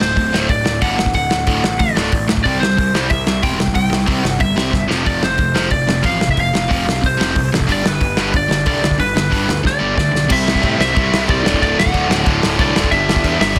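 A straight 4/4 punk rock pulse from a loose, small-room acoustic drum kit with a tight kick and rolled-off top drives this upbeat, rowdy excerpt. A double-tracked, cranked stack guitar pushes an overdriven riff up front, a fuzzy, growly picked bass sits beneath, and a twangy, slightly broken-up lead guitar carries the melody. Drum fills land near 4.7 and 9.6 seconds before a new section arrives at 10.3 seconds, all under light reverb and a dense, heavily limited master.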